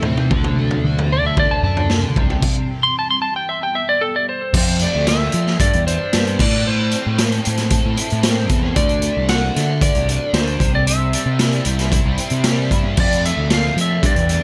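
A straight 4/4 pulse at 114 BPM is driven by a raw garage drum kit, with a punchy kick, a medium-tuned snare, hi-hat, toms and crash cymbal, all saturated and gritty with a rolled-off top, sitting up front in a small room. This brief cut from a longer psychedelic rock piece feels mysterious and dark. A fuzz-laden picked bass with overdrive thickens the low end, while a bright, double-tracked overdriven electric guitar plays a riff coloured by flanger and analog delay. Out front, a dark, clean lap steel guitar carries the melody, played with fingerpicks and slide, using volume swells and analog delay, and it opens with a slide solo through the first 4.5 seconds. Behind it, a lush vintage string machine holds mellow sawtooth chords with a sub octave, a moving notch and ensemble chorus; it drops out of the mix at 4.5 seconds and returns at 13.0 seconds. The harmony moves through D, C and Em, then F, G and Am, before returning to D, C and F, all set in an echo-heavy mix with small room reverb.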